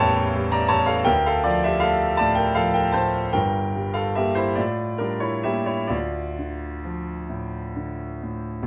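The recording has a dark overall production with a light reverb, while the solo concert grand sits up front with a bright, brilliant tone, deep bass and long sustain. This is a classical romantic nocturne in D minor, played slowly at 42-56 BPM in the dotted quarters of a 12/8 metre with a free, rubato feel. The mood is yearning and mournful throughout this 8.7-second fragment cut from a longer piece. The piano spans G1 to Bb5, its open resonance letting notes ring across the phrase. The harmony moves from A7 into Dm at 1.1 seconds, passes through Edim/G and a bare A5, and settles back on Dm at 5.9 seconds.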